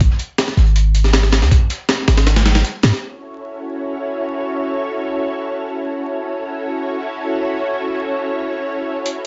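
A deep, boomy 808-style bass opens this dark, frenetic drum and bass and jungle excerpt at 159 BPM in F# dorian, sitting up front beside a compressed, thumpy sampler-style breakbeat kit with a high-tuned snare, while a saturated, rolled-off second break sits in the background. The bass and both kits stop at about 3.0 seconds, leaving a silky, warbling string machine with ensemble chorus and vintage 12-bit grit to hold sustained F#m7 chords until 9.3 seconds, with the up-front kit returning briefly at 9.1 seconds. Light reverb, small-room ambience and vinyl crackle surround the mix, which has a muffled top end.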